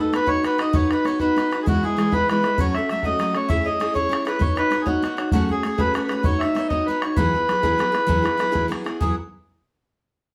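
Celtic folk in the form of a lively slide, this short cut from a longer piece moves at 131 BPM in a straight 12/8 feel, set in E major. A reedy, hollow accordion with a vintage, band-limited tone carries the melody up front, ranging from F#4 to E5 and holding its place until about 9.2 seconds. Beside it, a picked steel-string acoustic guitar rings out bright and concert-like, also up front, supplying accompaniment across a range from E3 to C#5. A damped, tight bodhran keeps the percussion going from 0.1 seconds, its sound suggesting a small room. The harmony moves from B through E, F#m and C#m into colored chords like Badd9, F#madd9 and Eadd9, all captured as a band playing live together in one room with a studio reverb that gives the whole a spirited, cheerful glow.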